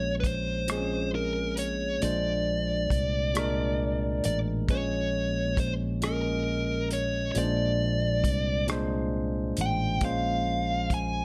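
Heard in a light reverb, this slow six-eight R&B fragment at 45 BPM has a yearning, late-night mood, with a dark, overdriven lead guitar sitting up front and playing the picked melody between Bb4 and Ab5 through slapback echo. A bright, barky tine electric piano, clean through a combo amp, carries the accompaniment over chords moving between Bbm9, Bb9 and Bbm7, while a round, punchy fretless electric bass holds the low end. A dry acoustic soul drum kit enters at 0.2 s with hi-hat, a tight kick and rim clicks, its top rolled off in a pumping room.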